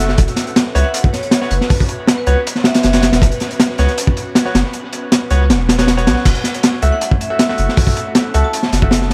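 A crunchy breakbeat drum kit sits up front in this dark, nostalgic drum and bass and jungle excerpt at 158 BPM in F# minor, its gritty, saturated kick, high-tuned snare, hi-hat and crash cymbal carrying a rolled-off top and dub echo, while a deep, round sub bass anchors the low end. A bright grand piano with audible action noise and vintage 12-bit sampler grit plays echoing stabs, and a metallic vibraphone struck with hard mallets, ringing with fast motor vibrato, sketches a melody in the background from 0.8 to 3.2 seconds and again from 6.8 seconds. Behind them an airy, breathy pad holds sustained chords through chorus and phaser, moving from Bsus2 to F#m7 at 6.3 seconds in an echo-heavy mix dusted with vinyl crackle.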